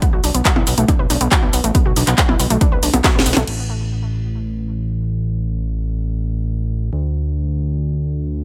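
Soaring and bittersweet, this uplifting trance excerpt at 139 BPM opens with a lush, brilliant, wave-folded unison pluck playing delayed, sidechain-pumped arpeggios over a heavy, up-front electronic kick and a layered techno kit of cracking snare, handclaps, hi-hat, shaker, crash cymbal and percussion blips, both drum parts carrying the ring of a large room, and after a drum fill from 3.0 to 3.5 seconds the fat, detuned sawtooth bass, pumping under the sidechain, carries on alone in a digital ambience until 8.4 seconds.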